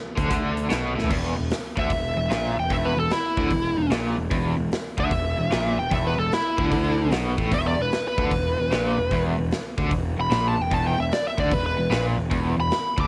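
Guitar, fuzz bass and drums come in together at 0.2 seconds, with a crunchy, double-tracked overdriven guitar playing a low riff through tremolo over a growly, fuzzed electric bass, setting a heavy, smoky blues rock and southern rock groove at 150 BPM in 4/4 with a swung eighth-note feel. The big rock drum kit sounds acoustic and roomy, with a punchy kick, a medium-tuned snare, bright cymbals across crash and hi-hat, and toms, and a drum fill at 0.9 seconds ushers in the main section. From 1.8 seconds a smooth overdriven lead guitar takes a solo high above the band, its tone mellow and set up front with tape echo trailing behind it. The riff guitar and bass hold down the low foundation while the drums drive beneath them. Light studio reverb gives the trio a natural space, and the passage is cut from a longer piece, stopping at 13.1 seconds.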